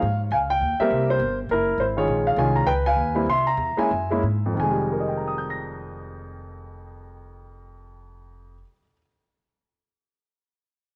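A baby grand piano with short sustain, placed up front, and a woody, thumpy pizzicato upright bass on gut strings open together in this swinging, late-night jazz piano trio excerpt in F minor, moving at a brisk 174-205 BPM swing through chords such as Dbadd9, Bbm7 and Fm9, slowing down from 2.1 to 4.6 seconds before the bass drops out at 8.6 seconds and the piano carries on to 9.1 seconds, all captured as a home recording on cassette.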